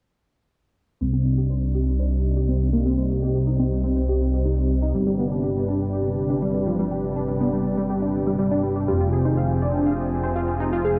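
Lush hall reverb and a filtered sheen frame this hypnotic, driving melodic techno excerpt at 122 BPM in C minor, where a deep, rumbling detuned saw bass sits up front under punchy, bright pluck arpeggios with phaser, tape echo and a filter sweep, thick sustained pad chords with chorus, a very quiet grainy egg shaker, a swarming, tense drone entering at 3.8 s, and a bold, dark lead with vibrato and tape echo arriving at 8.9 s over chords moving from Cmadd9 to G to Fmadd9.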